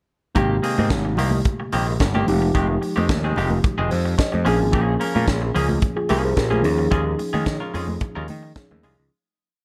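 A worn, slightly out-of-tune tine electric piano opens this short, celebratory and glamorous disco piece at 110 BPM in Ab major, holding drop-2 chords over Abmaj9, Fm9, Bbm7 and Eb9sus4. At 0.4 s it is joined by choppy sixteenth-note hollow-body electric guitar, a growly overdriven picked bass playing a syncopated line with slides, a tight funk kit with a high-tuned snare driving a four-on-the-floor beat with open hats on the off-beats, and thin-skinned congas in the background, with a piano fill at 3.6 s before a fade-out from 6.9 s in a dark, small-room mix.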